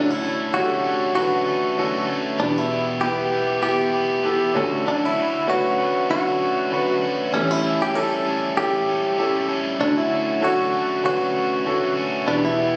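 A lightly swung 97 BPM groove in 4/4 carries this hopeful, uplifting piano-driven pop excerpt in D major, where a twangy, compressed clean electric guitar sings the melody up front over a clear, polished baby grand's accompaniment and a bright overdriven semi-hollow guitar riff, all three playing throughout the 12.8 seconds through Dmaj7, Em and A7 changes, with a phone-in-the-room capture adding roomy reverb and a dulled top end.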